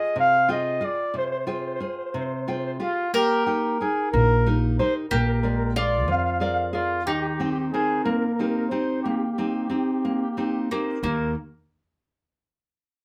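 Romantic and lively, this Italian folk serenade in 6/8 sets a warm, distant-sounding flugelhorn melody over a bright, double-strung mandolin second line, a full-bodied, fingerpicked nylon-string guitar with audible finger squeak, and a woody, growly pizzicato upright bass, heard in a wet small room as the harmony moves through Fmadd9, Eb/Bb, Bb7 and Eb6 before arriving on Eb at 11.0 seconds.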